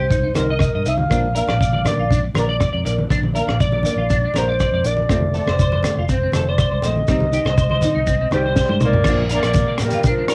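A breathy, whispered clarinet carries the carefree, danceable melody of this highlife guitar band excerpt over fingerpicked flamenco guitar, twangy chorused electric guitar arpeggios with tape echo, a round fingered bass, a gritty, saturated breakbeat kit, grainy shekere and distant low-tuned congas, with a subtone alto saxophone adding a second line from 8.3 seconds, all carrying a home cassette character.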